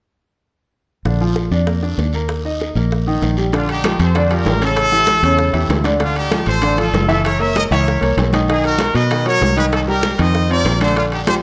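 Salsa at a brisk 194 BPM in Bb major, this joyful, festive excerpt opens with clear baby grand piano accompaniment, a dark, round fingered electric bass up front, very quiet tight bongos and a raspy guiro, before a bright pop-style trumpet section with light vibrato takes the melody at 3.5 s alongside thin-skinned congas and ringing metal-shell timbales in the background, within a moderate large-studio reverb.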